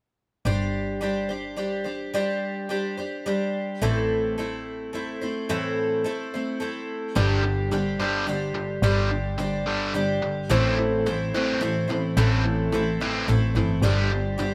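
Reflective and dusty, this folk rock and heartland rock excerpt in 3/4 at 108 BPM sets a shimmering, octave-doubled twelve-string acoustic guitar, picked up front with audible finger squeak, over an earthy bowed double bass moving between Gsus4 and Am, before a biting, double-tracked overdriven electric guitar riff enters at 7.2 seconds and a mellow, boxy upright piano with slapback echo adds a background second line from 10.5 seconds, in a dark production with light reverb.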